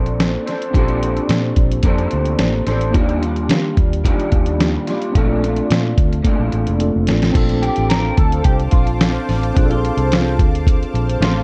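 Indie pop and bedroom pop at 109 BPM in Bb major, nostalgic and dreamy, where a muffled, pitched-down sampler drum kit with gritty 12-bit character and a thumpy kick sits up front over a round, foam-muted fingered bass, a twangy, slightly broken-up electric guitar with analog chorus and vibrato, and a tine electric piano with medium tremolo and cassette tape colour, moving through Bbmaj9, Ebmaj9 and Bbmaj7 before a drum fill at 6.3 seconds leads into a clean guitar solo at 7.4 seconds as a lush, detuned unison pad with chorus and phaser joins, all wrapped in a dark, light-reverb production cut from a longer piece.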